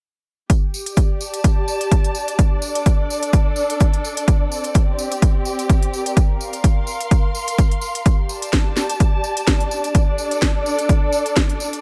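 Piano house at 127 BPM in G minor, bittersweet and energetic, this excerpt sets a punchy, overdriven electronic kick up front against a house kit of cracking snare and crisp hats, a close, ringing tambourine, and a veiled, con sordino symphonic string section bowing lush, dark chords with vibrato and sidechain pumping through Gsus2, Csus2, Bb6 and Gm9, all from 0.5 seconds in a small room with light reverb.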